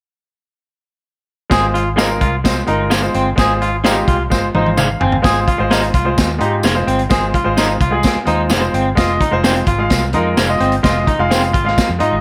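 A crunchy breakbeat drum kit anchors this uptempo 1960s-style soul piece, its gritty, saturated sound carrying a tight kick, a medium-tuned snare, hi-hat and toms, with a rolled-off top and a small-room feel. The band comes in at 1.5 s in Ab major at 129 BPM in a straight 4/4, with a clear baby grand piano up front as accompaniment, intimate and natural, its action noise audible and its notes sustaining long. An electric guitar through a small old amp plays a picked, slightly broken-up riff, while from 2.0 s a second guitar through a similar amp adds bright, twangy stabs, and a vintage muted fingered bass sits underneath, dark, round and foam-muted. A jingly tambourine in a live room fills out the percussion, and a drum fill at 4.3 s leads into the next section, with the harmony moving from Ab6 to Fm7. Light reverb lends space to the uplifting, warm mood of this clip cut from a longer piece.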